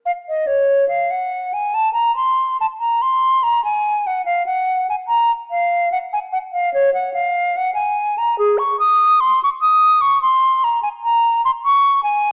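Classical baroque-style fantasia for unaccompanied flute, grave and flowing in a free rubato, where a hollow, pure concert flute with vibrato and tongued notes sits up front from 0.1 to 12.3 seconds in a moderate recital hall, heard through worn, warbling old cassette tape with pitch drift and a small-speaker sound, in a short cut from a longer piece.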